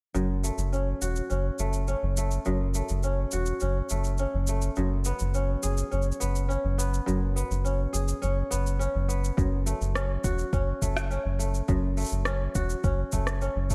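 Set in a digital ambience, this wistful, autumnal folktronica excerpt moves at 104 BPM in 4/4 in F# minor, with an up-front acoustic kora playing crisp, ringing fingerpicked arpeggios through a low-pass filter and digital delay. A round, deep analog bass with a dark sawtooth-and-sine tone carries a filter sweep beneath it, while a produced electronic shaker and rim click tick along over chords that move from F#m to C#5/F# and back. A soft electronic kick drum joins at 9.4 seconds.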